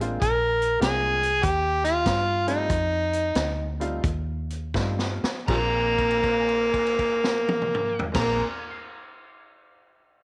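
This electric blues shuffle is a soulful, gritty excerpt in Bb mixolydian, swinging in 4/4 at 79-99 BPM and slowing down over its opening stretch. An overdriven, amplified harmonica sits up front with the melody, playing in a jazz style with light vibrato, tongue slaps and scooped notes. Beneath it, a vintage drum kit with dark cymbals, a high-tuned snare and a punchy kick is joined by a round, foam-muted fingered electric bass, while a clear, woody upright piano with long sustain and a slightly detuned character fills in the chords, moving from Bb9 through Ebadd9 to F9. A drum fill leads into a new section at 5.5 seconds, where the harmony returns to Bb9 and an overdriven slide guitar enters in the background on a high Bb. A held note carries on to 8.1 seconds, and light reverb gives the whole a small-room ambience.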